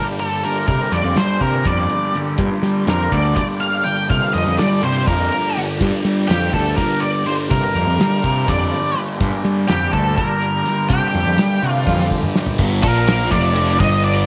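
An octave-fuzz lead guitar with slapback echo carries the melody over a double-tracked thick fuzz riff guitar with phaser and a very quiet, shouting tonewheel organ on slow rotary, with a damped 70s drum kit with dark cymbals and a punchy overdriven fuzz bass joining within the first second of this mysterious, trippy psychedelic rock excerpt in G minor and 7/8 at 247 BPM, where a drum fill at 11.9 seconds leads into a short new section as the organ drops out at 12.6 seconds.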